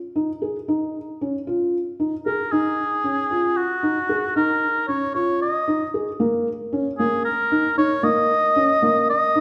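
The recording sits in a wet recital hall, its 1.8-second reverb giving this short cut from a longer contemporary chamber piece a resonant, church-like space. A felt-muted upright piano opens at 0.2 s with arpeggios in the middle register, its tone soft, dark and boxy, heard up front and intimate. At 2.3 s a solo oboe enters with the melody, singing in a classical style with light vibrato and a warm tone, also placed up front. The music moves at 228 BPM in eighths in an uneven 7/8 metre, centred on Eb minor, with a restless, hypnotic mood. The harmony rests on an Eb7 colour before shifting to a bare Eb5 at 6.2 s, where a second section begins and both instruments carry on to the close at 9.4 s.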